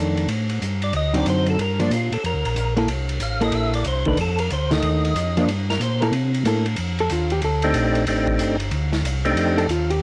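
A swung 4/4 groove at 185 BPM drives this bluesy, soulful soul jazz organ trio in F mixolydian, a short slice cut from a longer piece with the character of a home cassette recording. A mellow tonewheel organ carries the bass line from the first moment, round and up front, colored by chorus vibrato, a slow rotary speaker and tube saturation. A vintage acoustic kit joins at 0.2 seconds on hi-hat, kick, ride and snare, its punchy kick and dark cymbals set in a small, pumping room with a rolled-off top. From 0.8 seconds a percussive tonewheel organ takes the melody and solos, its third-harmonic percussion giving a clean, percussive edge to a dark tone shimmering through chorus vibrato and slow rotary speaker, as the chords move from Gsus2 through D7b9, Gm7 and C13 to F6. The compressed, fingered hollow-body electric guitar, heard throughout as accompaniment, steps forward for its own solo at 6.8 seconds over an F13, with light reverb and studio ambience around the whole trio.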